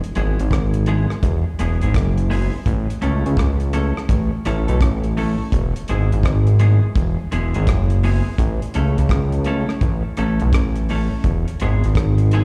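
Roots reggae at 84 BPM in E major, with a swung 16th-note feel and an uplifting, sunny mood, moving between E and A chords in this short cut from a longer piece. A fat, thick analog bass with a detuned sawtooth tone and filter pluck sits up front beside a cloth-damped, thuddy acoustic kit of tight kick, hi-hat and rim click with a rolled-off top. A clean, compressed semi-hollow electric guitar enters at 0.2 seconds, its picked hollow-body sound carrying dub and slapback echo, and the performance is heard as a live gig through the venue's PA with recital hall reverb.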